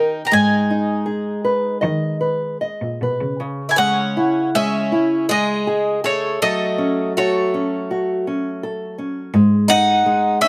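Longing and mournful, this fado-style ballad, cut from a longer piece, moves in unhurried rubato as an up-front, woody mandolin carries the melody over a small, fingerpicked nylon-string guitar and a shimmering, octave-doubled twelve-string guitar line, those three touched by slapback echo, while a reedy, bowed cello with a gut-string tone holds the bass from 0.3 s to 3.4 s and returns at 9.3 s, all in a dry, open-air sound.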